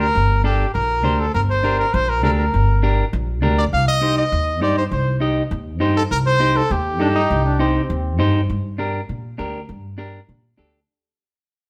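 A straight 4/4 pulse at 201 BPM drives this fiery, danceable Latin cut in G minor, taken from a longer piece. A woody, thumpy upright bass sits up front with plucked steel strings, while a clean, picked electric guitar adds warm accompaniment across the full 10.8 seconds. A clear trumpet with light vibrato carries the solo melody in a pop style until 8.2 s, and a bright trombone with a smooth top joins at 7.0 s on a brief second line. The harmony moves from Gm to Cm and back to Gm as the band, playing live together in one room, fades out from 8.5 s. A moderate stone-room reverb gives the ensemble a natural, roomy ring.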